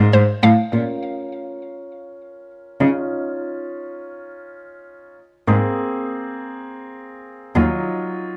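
Driving and confident, this dance-pop passage in Bb minor moves at 101 BPM in a straight 4/4, cut from a longer piece and set in a moderate echo-chamber reverb. A bowed solo cello, soft-attacked and floating in sul tasto, carries the bass up front until 7.6 s, while a polished, present baby grand piano plays accompaniment through a low-pass filter that sweeps from 0.7 s to the end. A hollow, detuned square-wave pluck with chorus and tape echo flashes a brief melody between 0.1 and 0.6 s, over chords that move from Abadd9 to Bbm and Dbadd9, back to Abadd9, and on to Ebmadd9.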